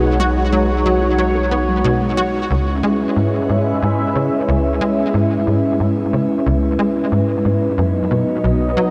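Ambient, sequencer-driven space music in C# minor at 91 BPM in a straight 4/4, this cosmic, hypnotic passage is cut from a longer piece. A bright, resonant sawtooth pad with a slow attack and long release holds sustained chords up front, treated with chorus and shimmer reverb, while a tight, punchy sequencer bass drives a nasal, evolving riff through ensemble chorus, tape echo and shimmer reverb. A very quiet, warbly pluck with a dusty, lo-fi, detuned character spins mellow arpeggios, and a faint bubbling texture steps its resonant filter at random on a high C#5. A deep, round sine sub bass anchors the opening and drops out at 2.5 seconds, as the harmony moves from B6 to C#m7 before settling on B at 7.8 seconds. The whole dreamy mix is soaked in a huge, wet ambient reverb with an 8.8-second tail.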